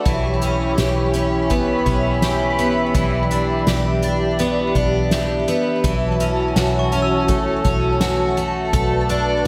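A shimmering, octave-doubled twelve-string acoustic guitar picks up-front arpeggios through lush chorus and delay in this hazy, melancholic dream pop excerpt at 83 BPM, set over a smooth, detuned sawtooth pad, a round, foam-muted electric bass holding B1, and a soft-mallet drum kit with a boomy kick and fat snare, while a sparkling glockenspiel with delay rings in the background from 6.6 to 8.0 seconds, with chords moving from C#m7b5/B through Em7/B and F#m7/B to Bm7, all bathed in a lush hall reverb.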